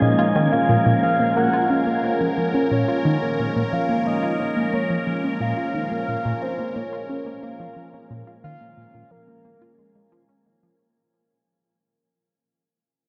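Hypnotic and mysterious, this fragment of sequencer-driven ambient space music sets a tight, driving sawtooth riff carrying a filter sweep beneath a swirling, up-front phased pad, while a soft, round, octave-layered lead sings a melody with vibrato and tape echo and a breathy, wind-like tuned noise hovers in the background, the mix steeped in a huge, dark reverb as the passage fades out.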